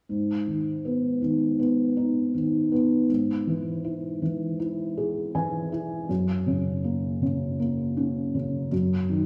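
Bathed in a wet recital-hall reverb, this short, longing pop fragment at 80 BPM in G# minor features a dark, boxy felt-muted upright piano sitting up front as accompaniment, moving from G#m through E/G# to F# and a rootless B/F#, with a brief felt piano fill from 5.0 to 6.1 seconds.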